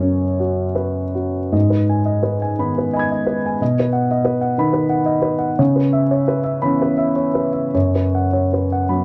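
A solo grand piano sits up front with a dark, mellow tone and long sustain, carrying this intimate, tender fragment of neoclassical minimalist music from a longer piece. It moves in a rubato 6/8 at roughly 51-62 BPM, drifting from an opening F#sus4 into G#m at 1.5 seconds, then through B and C#m7 before settling back on F#sus4. Light reverb and a dark, warm production give the nine-second passage a close, intimate feel.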